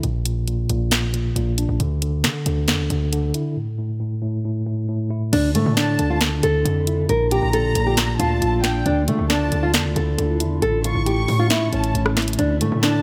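A mellow, filtered tine electric piano opens this eerie, hard-hitting half-time trap piece over punchy, heavy 808 bass and a produced drum kit of sharp snare, hi-hats, finger snaps, rim clicks and crash cymbal; after a short break, an up-front fingerpicked nylon-string guitar carries the melody through filter and delay from 5.3 seconds, joined by a smooth, bowed violin section with vibrato at 5.8 seconds and a cloudy, blurred granular pad in the background from 6.3 seconds.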